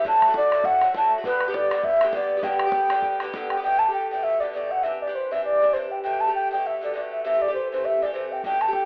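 A lively, rollicking Celtic reel in G major opens with a baroque flute carrying the melody up front, its airy, woody tone close-miked with vibrato and a crisp attack, over a picked Irish bouzouki whose metallic double strings give a mellow acoustic bed underneath. A damped, tight bodhran joins at 0.1 seconds and drives the first passage at a brisk 200 BPM in 4/4, with a swung eighth-note feel. At 3.6 seconds the tune moves into a second section built on Gadd9, Cadd9 and Am7, and the drum drops away, leaving flute and bouzouki to carry the reel before it returns briefly at 8.4 seconds. The flute stays expressive and prominent throughout, while the bouzouki and the small-room bodhran sit further back. A wet studio reverb surrounds the playing, and the overall sound has the rough character of a home demo mix heard over AM radio, cut from a longer piece.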